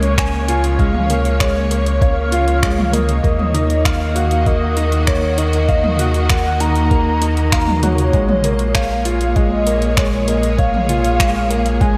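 Piano and strings electronica at 98 BPM in 4/4, cinematic and melancholic, this 12-second cut from a longer piece moves through Db6, Ebmadd9 and Bbm7 chords in a dreamy mix soaked in lush hall reverb. A velvety, detuned synth lead carries the melody with chorus, vibrato and diffuse ambient delay, while a brilliant baby grand piano plays a riff with audible action noise, and a distant bowed string section holds sustained chords with sidechain pumping. Underneath, a round analog bass with tube saturation and pumping sits beside a muffled, thumpy kick entering at 0.2 seconds and a deep house kit of finger snaps, dark hi-hats and toms.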